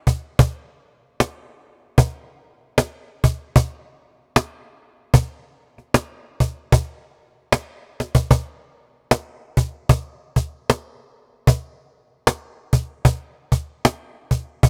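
A snappy, acoustic cajon with snares sits close, dry and up front in this ominous, sludgy metal excerpt, swinging its eighths in 4/4 across two sections and marking the change with a fill at 7.9 seconds.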